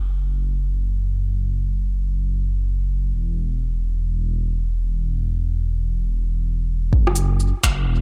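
A dark, detuned saw bass opens this short future garage excerpt, sitting up front with a deep, rumbling tone whose detuned layers beat against each other over a sine-like weight. Its fast attack and sustained notes are thickened by tube saturation, and sidechain pumping gives the low end a breathing motion as it hovers between E1 and F#1. The mood is nocturnal and ghostly, set in an echo-heavy digital ambience, with the whole piece tuned slightly high to A4 = 441 Hz. At 6.9 seconds a soft, overdriven electronic kick arrives with a small room around it. Moments later, at 7.1 seconds, an organic-leaning electronic kit joins up front with finger snaps, crisp hi-hats, rim clicks and shaker, its overdriven sound rounded off by low-pass filtering on the percussion, snare and hats.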